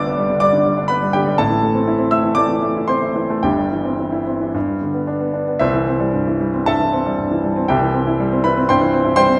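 Classical virtuoso piano study in C major at 114 BPM, its sparkling, brilliant mood carried by a warm, polished baby grand piano that plays solo, present and up front, across a range from G1 to E6. The 4/4 pulse bends with rubato and uneven beats, while chords move from G through Am and C/G back to G before a new section arrives on C at 5.6 seconds. A moderate recital hall reverb surrounds the piano in this 9.4-second excerpt cut from a longer piece.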